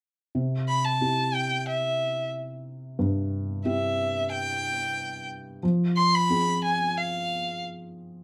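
Acoustic folk-pop ballad excerpt, intimate and hopeful, where a focused, bowed violin with vibrato and a smooth top carries the melody up front over a felt-muted upright piano whose dark, mellow accompaniment carries audible action noise, the harmony shifting from C to Fm at 5.6 seconds in a moderate studio reverb.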